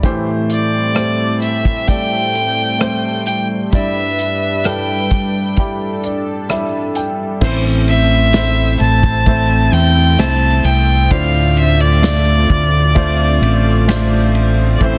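This heartbroken pop ballad opens with a clear, intimate grand piano playing accompaniment, its action noise audible and its notes ringing with long sustain, while a lush, detuned sawtooth pad with chorus holds thick, warbling chords in the background and an acoustic drum kit played with bundle sticks sets a slow, straight pulse. From 0.5 seconds a single bowed violin carries the melody up front, its rich, smooth tone shaped by vibrato and touched by digital delay. The drums sound airy and polished in a small room, with dark cymbals, a medium-tuned snare, rim clicks and a punchy kick. The piano plays a fill leading into the second section, where a fingered electric bass enters at 7.4 seconds, round, dark and up front, adding weight beneath the harmony. Light reverb and a dense, heavily limited modern master give this emotional passage, cut from a longer piece, a close and polished finish.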